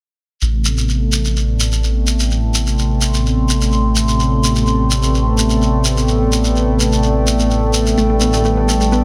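Melodic techno in a melancholic, hypnotic mood, cut from a longer piece: a rumbling, beating detuned saw bass sits up front under a thick, bright chorused unison pad holding Amadd9, while a grainy, mellow shekere in a small room keeps the straight pulse. A nasal, evolving analog drone joins at 0.9 s, a wobbling, nostalgic lo-fi tape-like pad floats high above with chorus and its own reverb, and a filter sweep runs on an analog synth pad through the whole section. At 8.0 s the harmony moves to G/A as a punchy unison pluck enters in the background with dub echo, all within a dense, heavily limited modern master with light reverb.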